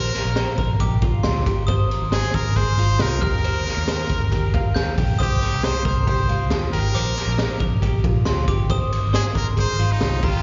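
Jangly indie pop at 137 BPM in a straight 4/4, this short cut from a longer piece feels bittersweet and restless, cycling through Bbadd9, Ab, Ebadd9 and Cm. A brilliant, forceful trumpet carries the melody in a pop style with vibrato, its tone sent through slapback echo and digital delay. Alongside it, a bright, twangy twelve-string electric guitar picks clean, compressed arpeggios with the same echo and delay, while a glockenspiel struck with brass mallets adds a sparkling, bell-like second line, close-miked and dry apart from its slapback echo. A vintage fingered bass, foam-muted, dark and round, anchors the low end with a punchy, amped tone. The raw garage drum kit enters at 0.1 s and sits up front, gritty and saturated with a high-tuned snare, boomy kick, hi-hat, ride and crash. The whole thing sounds like a live gig heard through the venue's PA, bathed in recital hall reverb, with the top end cut off above 7.5 kHz.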